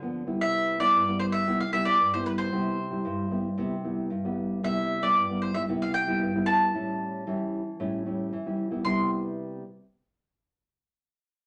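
Festive and sunny, this samba fragment moves at 114 BPM in a straight 4/4, set in C major with tuning pitched slightly low at A4 = 438 Hz. A woody, double-stringed mandolin carries the melody up front, its picked notes ranging from B4 to C6. Beneath it, a dark, thumb-plucked nylon-string guitar in a classical vein supplies the accompaniment from G2 to E4, also placed close to the listener. The harmony opens on Cmaj7, shifts to A7 at 6.7 seconds, and returns to Cmaj7 as a new section begins at 8.9 seconds. The mandolin stops at 9.1 seconds and the guitar at 9.6 seconds, all within a wet studio reverb with a short decay, in a passage cut from a longer piece.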